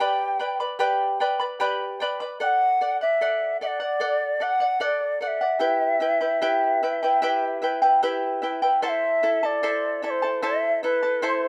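Andean folk for an Andean ensemble, this brief passage cut from a longer piece moves at an unhurried 75 BPM in a straight 4/4, with an earthy, festive mood. A large quena carries the melody from start to finish, its end-blown wooden tone airy and warm, with tongued notes, a touch of chiff at the attack and a gentle vibrato, all coloured by a slapback echo that gives it a slightly distant cast even as it sits up front. Beneath it, a fingerpicked charango supplies the accompaniment throughout, its double strings, some doubled at the octave, producing a bright, shimmering ring. The harmony moves from G to D and E minor before turning to A minor at 8.8 seconds, where the opening section begins again. The sound is dry and open-air, captured outdoors with little reverb and both instruments close and present.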